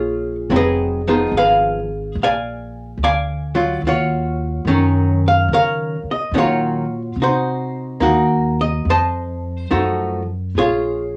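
A smoky, melancholic jazz ballad in Bb minor at a slow 72 BPM with a swung feel, this short home-recorded cassette excerpt pairs a dark, clean, compressed hollow-body archtop guitar, picked up front with a tape tint, comping through minor-key changes from Bbm7 to F7b9, with a woody, thumpy gut-string upright bass plucked close beneath it, both playing throughout the 11.2 seconds in a small room with light reverb.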